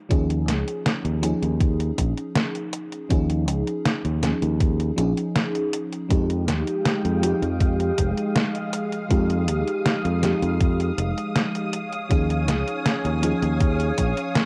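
A straight 4/4 pulse at 80 BPM comes from a thumpy, sampler-style electronic kick sitting up front, joined by a detuned 8-bit digital drum machine that supplies hi-hat and a medium-tuned snare, both with a tape-softened, small-room character. This melancholic, nostalgic vaporwave fragment, cut from a longer piece, rests on a fingered electric bass with tube saturation, moving between F1 and F2. An FM electric piano layered with a soft pad carries the accompaniment, its dreamy, full-bodied, detuned tone decaying under lush chorus, cassette tape coloring and analog delay. At 6.4 seconds a mellow, silky string machine enters with slow-blooming sustained chords shimmering through ensemble chorus. The harmony drifts from Eb9sus4 to Fm9 at 6.1 seconds and back to Eb9sus4 at 11.7 seconds, all wrapped in light reverb and the hazy feel of a home cassette recording.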